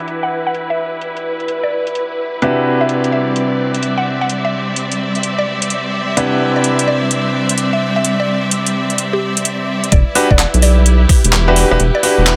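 This bouncy, late-night two-step garage cut opens with bright, intimate grand piano stabs under a filter sweep, alongside a lush, bowed string section pumping against the beat and a tape-warm kit of metallic hats, handclaps and rim clicks. A woody, round mallet-like pluck carries the melody in the background through chorus, phaser and digital delay, as the chords move from Em7 to Cmaj9#11. At 9.9 seconds the drop lands with a knocking electronic kick and a rubbery, dark square bass up front.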